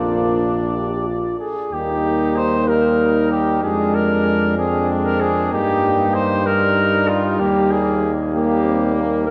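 Set in a deep, reverberant church acoustic with a dark, warm production, this brass quintet excerpt unfolds in a straight 6/8 with a triumphant glow. A distant, roomy trumpet with light vibrato carries the melody up front while a second trumpet, soft-attacked and set back, plays a lower line beneath it, and a mellow French horn and a clear euphonium fill in the accompaniment. A bright bass trombone anchors the bass prominently as the harmony moves from Bb to Eb at 1.7 seconds and settles back on Eb at 7.4 seconds.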